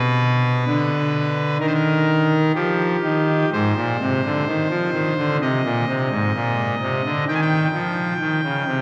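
Steeped in a wet cathedral reverb with a 4.7-second decay and a dark, warm production, this brief fragment of a reverent, majestic classical chorale in Eb major moves at a rubato 64 BPM in 4/4, as a solo pipe organ on its trumpet stop sounds brassy and up front with a baroque voicing and audible chiff, spanning Ab2 to Ab5 through chords that pass from Bm to Ebadd9, a rootless Ab and finally Eb7.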